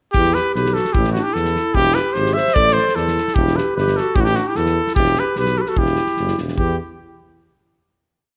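A moderate recital-hall reverb gives this short, complete Balkan brass band piece a roomy, natural sound. In E minor at 149 BPM in a straight 2/4, the mood is fiery and restless, tuned slightly high to A4 = 444 Hz. Up front, a warm trumpet with a soft attack carries a motif-based melody built from period phrases, played in a classical style. A clarinet adds a harmony line, mostly in thirds, from 0.2 seconds. Further back, a mellow tuba with light vibrato plays root-and-fifth bass on the main beats. A loose acoustic drum kit with a small-room sound sits mid-forward, pairing a fat snare with a tight kick in a two-stick pattern, before the piece settles on a final chord at 6.6 seconds.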